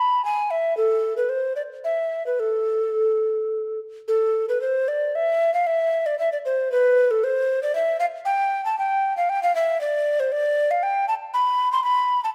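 Solemn and grave, this short passage from a longer baroque-style classical fantasia in A minor unfolds in a rubato 3/4 at around 105-119 BPM, as a lone tenor recorder, up front with a hollow, airy wooden tone, tongued notes with chiff and vibrato, spans A4 to C6 for the full 12.3 seconds within a moderate stage reverb.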